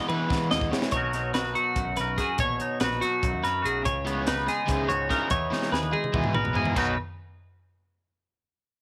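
Bright, clean twelve-string electric guitar arpeggios ring up front alongside a double-tracked, crunchy overdriven guitar riff in this intricate, bright math rock and midwest emo excerpt in B major, played in 7/8 at 288 BPM in eighths, as a growling overdriven picked bass and a crisp, airy fusion drum kit with a high-tuned snare and tight kick join with fills, a twangy electric guitar with subtle chorus enters on accompaniment at 0.9 seconds while the riff guitar drops out until 3.9 seconds, and jazzy chords such as Bmaj9 and C#m9 move through a small room ambience.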